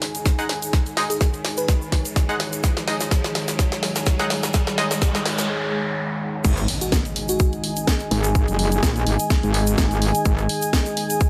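A metallic, wobbling FM bass arrives with the drop at 6.4 seconds, up front, saturated and aggressive, and it dominates this gritty, swaggering bass house excerpt until 10.5 seconds. Before it, a build-up gathers over a dark, detuned analog pad with a filter sweep and a mellow, warbling lo-fi pad with nostalgic character, both carrying sidechain pumping and chorus. A tight, layered electronic kick sits prominently with a garage kit of cracking snare, hi-hat and crash, while a grainy acoustic egg shaker adds texture and a drum fill runs until 5.5 seconds. A band-passed, nasal chord stab with delay cuts through in the opening half, and a bell-like, sparkling FM electric piano offers brief melodic figures in both sections. In the background, a riser and noise sweep lead through a short break into the drop, where an impact lands, all set in a light digital ambience with a 16th-note swing.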